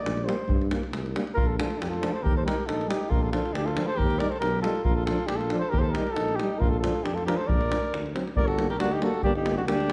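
A straight 2/4 pulse at 137 BPM drives this bittersweet, virtuosic Balkan brass band excerpt in Bb major, with a deep, up-front davul and a soft-attack tuba anchoring the low end. A mellow flugelhorn carries the jazz-style melody with light vibrato and scooped notes, leading the opening before a warm, classical-style alto saxophone adds a second line at 1.4 s, while a smooth-topped trombone and vibrato-laced euphonium sit in the background. The harmony opens on Gm, rocks between Bb and Eb, then turns through D7 back to Gm at 8.4 s, all framed by a dark production and a moderate recital-hall reverb.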